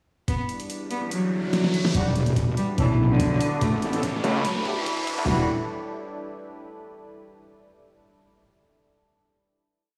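The recording sounds like a big sound system playing in a bare stone room, with light reverb and a high-passed digital ambience around it. This is a heavy, chaotic wobble dubstep piece in E dorian at 144 BPM with a half-time feel, moving through Em7, Dadd9, Bm7, Aadd9 and Gadd9 before settling on a final Em7 chord at 5.3 seconds. A bright, biting cello with vibrato and a nasal, airy bow sits close and up front, playing a repeating riff with digital delay over an evolving, warbling wavetable pad treated with phaser and sidechain pumping. Two layered electronic drum kits supply a knocking kick, huge snare and hats with a tape-tinged tone. The kick drops out for a fill just before a saturated, detuned wobble bass and distant, roomy brass stabs with echoing delay arrive at 1.9 seconds. A riser and filter sweep drive the build, and a snarling, growling distorted saw bass joins the wobble bass up front at 4.2 seconds.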